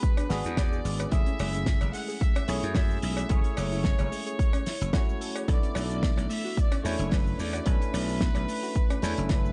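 A lightly swung 110 BPM groove in 4/4 drives this groovy, sleek nu-disco excerpt in B dorian, with a punchy, up-front, layered electronic kick alongside a damped, dry 70s kit of fat snare, hi-hat and cabasa, a cowbell sitting in the background from 0.2 s, and a growly, tube-saturated slap bass joining at 0.3 s. A barky electric piano pumps against the kick with E7, F#m9 and Bm11 chords, while a very quiet, detuned sawtooth unison pluck spins arpeggios beneath. On top, a biting yet earthy chamber violin section carries the melody with light vibrato and analog delay, all set in a dark, close mix with little reverb.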